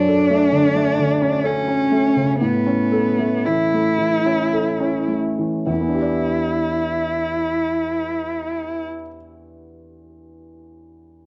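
In a rubato 3/4 that moves between 50 and 68 BPM and slows through the first 5.7 seconds, this neoclassical fragment for piano and strings, cut from a longer piece, unfolds in E dorian with a melancholic, reflective mood, tuned to A4 = 438 Hz. A grand piano, present and polished, sits up front as the accompaniment, ranging from E2 to D5 until 11.3 seconds. Beside it, a single bowed cello carries the second line between B3 and E4, its rich tone shaped by vibrato, a soft attack and expressive portamento, before it stops at 8.8 seconds. The harmony passes from Dmaj7/F# to A and settles on Em7 as a new section begins. Both instruments carry the coloring of cassette tape, and a moderate spring reverb with a 1.3-second decay gives this home recording its sense of space.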